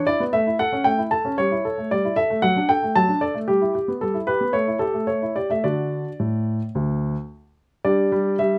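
In an uneven 4/4 pulse, this cheerful, playful classical-period sonatina fragment is carried by a solo baby grand piano, warm and natural in tone with short sustain and an up-front presence. The piano spans D2 to A5, moving through chords such as A7/G, D/F# and Em/G before arriving on D at 5.6 seconds and reaching a G5 chord near the close. A light reverb gives the short clip a little air.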